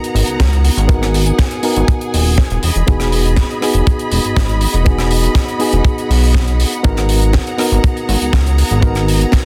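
Dense and heavily limited, this short nu-disco cut sits in a small room with light reverb, its dry, up-front kick and glossy chorused synth bass leading the mix. At 121 BPM in straight 4/4 and G# minor, the groove feels groovy and cosmic, moving from G#m9 to Emaj7 at 2.6 seconds and back to G#m9 at 6.8 seconds. The retro bass blends pulse-wave and sawtooth tones with pulse-width modulation and its own filter sweep, sustaining low notes that pump against the kick, which enters at 0.4 seconds. A tight, acoustic funk kit adds hi-hat, rim click and a high-tuned snare. A reedy, clean electric piano carries the accompaniment with fast tremolo, delay, a low-pass filter sweep across the whole passage and sidechain pumping. Alongside it, a warm, bowed studio string section holds sustained chords with vibrato and a smooth, focused top, breathing with the same pump.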